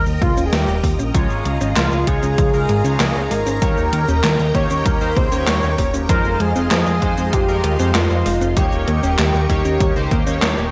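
A velvety, vibrato-tinged synth lead carries the melody from the start, over a lush phased string machine, a round, tine-like pluck playing echoing arpeggios and a fat, detuned analog bass that pumps with the strings. A gated, overdriven drum machine of snare, handclaps, hi-hat and shaker joins with a punchy electronic kick, and glossy chorused polysynth stabs enter at 1.1 s as the chords move through Eb7, Dbadd9 and Fm7. This nostalgic, romantic synthwave fragment sits in light reverb, with the bass up front and the strings and pluck tucked behind.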